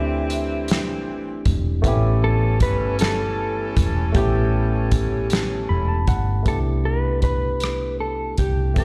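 Sensual and intimate, this slow six-eight R&B groove moves with a straight feel. A mellow, dark electric guitar carries the clean, fingered, compressed melody, while a barky tine electric piano, played clean through a combo amp, provides the accompaniment and takes a short fill from 5.3 to 6.5 seconds. A clear, distant jazz-style horn section adds tight stabs with a soft attack and light vibrato through the opening stretch. Underneath, a woody fretless electric bass sits up front with a round, hollow-body tone and subtle chorus, and a soul drum kit enters at 0.3 seconds with hi-hat, kick, rim click and snare, its sound saturated, gritty and rolled off at the top. The parts carry little reverb of their own but ring out through a big sound system in a bare stone room, and the harmony moves from D9sus4 and A7 to Cmaj13 in this brief cut from a longer piece.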